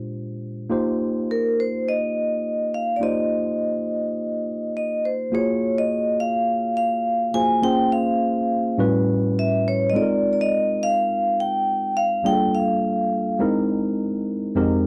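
A lightly swung sixteenth-note groove at 104 BPM in 4/4 carries this lush, warm soul excerpt in Eb major, tuned to A4 = 436 Hz. A worn, slightly out-of-tune tine electric piano played through a combo amp sits up front from the start, and at 1.3 s a close-miked vibraphone with medium mallets joins with a full, metallic, ringing melody colored by slow motor vibrato, while the harmony moves from Bb13 and Eb69 into a new section at 5.3 s that passes through Gbmaj7, A13 and Gm7 before landing on C7alt, set in light reverb within a dry, close 1970s-style studio sound.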